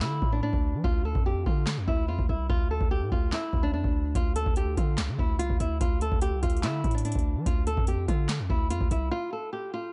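A fingerpicked nylon-string guitar leads this dark, hard-hitting trap excerpt in D minor, its boxy, intimate tone set up front and softened by a low-pass filter as it carries the melody over a held D minor chord. Beneath it, a long sustained 808-style bass with a pure sine tone and fast attack hums deep and decays, while a booming analog drum machine drives at 145 BPM in a half-time 4/4 feel. The drums hit with a deep kick, a crisp snare, handclaps and metallic hi-hats, all overdriven and re-recorded in a small room that lends a short ambience to the snare, clap and hats, and they sit prominently up front. The whole mix is murky and rounded, bathed in digital ambience, with the tuning set slightly low at A4 = 438 Hz. The drums drop out at 9.0 seconds and the bass at 9.1, leaving the guitar alone until the clip ends at 9.9 seconds.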